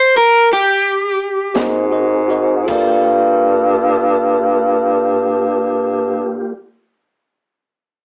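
Rough like an AM radio in a small rehearsal room, this mournful, soulful slow blues fragment in 12/8 opens with an up-front, overdriven hollow-body guitar picking a lone phrase over a stop as the pulse slows. From 1.5 s a clean tine electric piano sits in the background, a soft, flute-like tonewheel organ holds chords through a slow rotary speaker and chorus vibrato, and a dry cocktail kit with dark cymbals, a high-tuned snare and a punchy kick plays briefly. From 1.6 s a warm bass clarinet carries the bass with vibrato and scooped notes, all over chords moving from Gm to Ab7 to Gm7.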